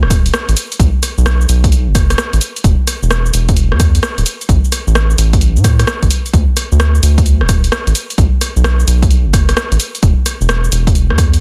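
A dense, heavily limited modern mix with little reverb puts a rubbery, hollow square-wave bass and an overdriven electronic kick up front in this bouncy, soulful two-step UK garage excerpt, swung on the sixteenths. The dark, plucky bass sustains low beneath a punchy analog drum machine of hi-hat, rim click and shaker, its gritty drive and the kick's both carrying the air of a large room. The bass and drum machine run from 0.0 to 11.4 seconds, while the kick enters at 0.1 and stops at 11.3 seconds.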